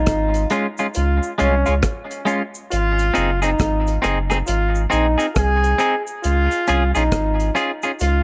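Meditative and hypnotic, this short roots reggae cut from a longer piece sets a brilliant trombone second line with scooped notes and tape echo over a round, sine-like sub bass, a dry, dark drum kit of hi-hat, tight kick and rim click, a twangy, clean electric guitar, also treated with tape echo and entering at 0.5 seconds, and a cabasa tucked in the background, all moving from Db to Ab and back to Db inside an echo-heavy mix with light reverb.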